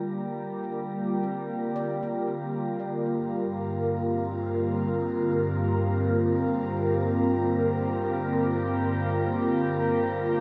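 Ambient, melancholic and reflective, this dreamy excerpt from a longer piece sets a breathy, up-front pad of sustained chords with chorus, phaser and a filter sweep over a warbling vintage analog drone, a very quiet, ringing handpan playing arpeggios until 6.7 seconds, and a mellow wind-like tuned noise texture in the background, in a mix soaked in plate reverb.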